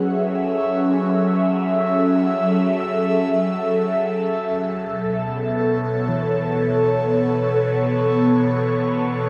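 In free time, this serene, melancholic ambient fragment sets a breathy, detuned pad of sustained chords with chorus and phaser up front over a very quiet, worn and slightly out-of-tune tine electric piano playing arpeggios, with both parts running throughout, moving from F#m7 to B9sus4 at 4.8 seconds and washed in a huge, wet reverb.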